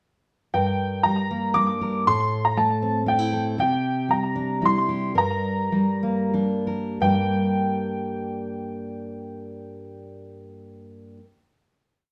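From 0.5 s a woody, slightly detuned upright piano with slapback echo and plate reverb sings a motif-based melody in period phrases over a dark, full-bodied fingerpicked steel-string guitar with an alternating thumb and audible finger squeak in this intimate, melancholic acoustic folk piece in G dorian and 3/4, which moves at 86-119 BPM, slows from 3.6 s, and settles onto a final chord at 7.0 s in a moderately reverberant room.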